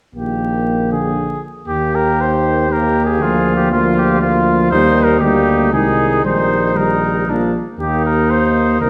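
Heard through a roomy recital-hall reverb and a veil of vinyl crackle, this noble, triumphant classical brass quintet excerpt in Eb major moves at 118 BPM in a steady 3/4, with a brilliant bass trombone up front anchoring the low end, a mellow French horn with light vibrato and a warm trombone sitting further back providing accompaniment, a distant trumpet carrying a second line, and a clear, gently vibrato-tinged lead trumpet stepping forward with the melody at 1.7 s.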